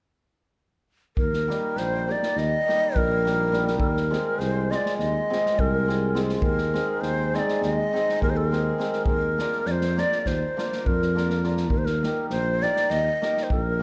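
Exuberant and virtuosic, this Balkan wedding-band folk excerpt in 9/8 at 205 BPM in Eb major sets a breathy, bright, reedy ney with vibrato up front for the melody over a dark, smooth-topped tuba bass, a distant, roomy acoustic drum kit with punchy kick and bundle-stick snare, and a shimmering hammered dulcimer entering at 1.5 seconds, all moving from Eb through Fm, Ab/Eb and Bb/Eb back to Eb in a moderate recital-hall reverb with a dark, warm production.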